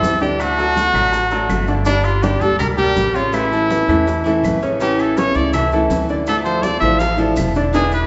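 A straight 4/4 groove at 163 BPM drives this danceable, sultry excerpt of Cuban son and guajira, tuned to A4 = 435 Hz. Congas with a thick-skinned tone played with soft hands sit in the background, joined by round, low-tuned bongos that sound distant and very quiet, grainy, mellow maracas, and faint claves that come in at 0.4 s. A dark, thumpy upright bass played pizzicato on gut strings anchors the low end, while a warm, picked steel-string guitar supplies accompaniment, its finger squeaks audible. A brilliant, slightly worn concert grand spins arpeggios with a deep bass, and up front a punchy, vintage-toned trumpet carries the solo melody with forceful, pop-style brightness over a progression of D, Gm, A and Dmadd9. The band plays live in one room bathed in a large studio reverb with a 1.3 s tail, and the highs are capped at 7.9 kHz.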